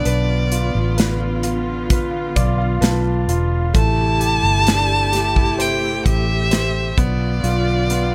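Lightly reverberant, this longing, emotional pop ballad fragment places an expressive bowed solo violin with vibrato and portamento up front over a punchy studio drum kit and a round, foam-muted fingered electric bass, while an intimate, polished concert grand piano with audible action noise accompanies and adds a fill from 1.9 to 3.7 seconds, a lush, woody string section sustains chords in the background, and a mellow French horn section carries a second line touched with delay, over harmony moving from Bdim to Am7 and back to Bdim.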